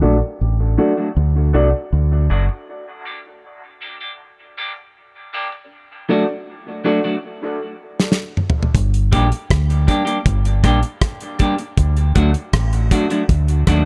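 Dub reggae, heavy and meditative and cut from a longer piece, in which a clean, hollow-toned semi-hollow electric guitar and woody, boxy upright piano stabs with audible action noise pass through filters and dub echo during an opening filter sweep and break, while a round, dark fingered electric bass drops out at 2.5 seconds and returns at 8.8 seconds, and a dry, damped 70s drum kit with a tight kick enters with a fill at 8.0 seconds, within an echo-heavy mix.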